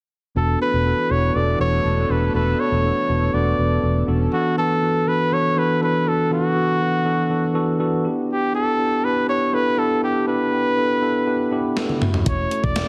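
A straight, steady 4/4 pulse underpins this dramatic, moody slice of 1980s-style pop, cut from a longer piece. A clear flugelhorn carries the solo melody with vibrato and a present, punchy tone, while a mellow tine electric piano supplies accompaniment beneath it throughout. In the opening stretch, a lush, detuned unison pad with chorus holds thick sustained chords in the background, and a dark, round, foam-muted fingered electric bass anchors the low end before both drop away at 4.3 seconds. The harmony moves from Bm7/E to Em7 and then F#m7/E, set inside a moderate, lush hall reverb. Near the close, at 11.8 seconds, a gated digital drum machine bursts in with a fill across toms, snare, kick and hi-hat, its overdriven, sampler-style snare treated with gated reverb, and the bass returns briefly at 12.3 seconds.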